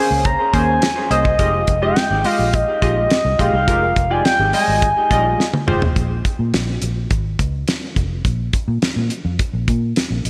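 Danceable and late-night, this early-eighties boogie funk excerpt moves in a straight 4/4 groove over Bbm9 and Fm9 chords. A smooth, expressive synth lead sits up front, blending sawtooth and triangle tones with a soft attack, vibrato and chorus. Beneath it, a punchy polysynth comp mixes sawtooth and square waves with a fast attack and a filter sweep, while a bright, twangy electric guitar plays a slightly broken-up picked riff through a small old amp in the background, both carrying slapback echo. A round, foam-muted fingered bass and a dry, acoustic drum kit with a fat snare and tight kick anchor the groove. As a drum fill rolls in at 5.4 seconds, the synths and guitar drop away, and from 6.0 seconds only bass and drums carry on until 10.3 seconds, all within a lush hall reverb that lends a big arena sound.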